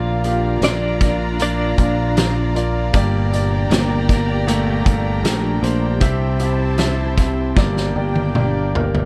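A straight 4/4 pulse at 78 BPM carries this melancholic, emotional pop ballad excerpt in G minor through Bb, Gm and C, where a roomy indie drum kit with a fat snare enters at 0.2 s and closes on a fill from 7.6 s, a round, punchy fingered bass and deep concert grand piano sit up front, a clean, compressed electric guitar with tremolo carries the melody only until 2.5 s, a lush bowed violin section with vibrato and tape echo adds a second line, a very quiet fingerpicked steel-string acoustic guitar plays arpeggios, and an airy, breathy pad with chorus holds sustained chords in the background, all within a dark, small-room production.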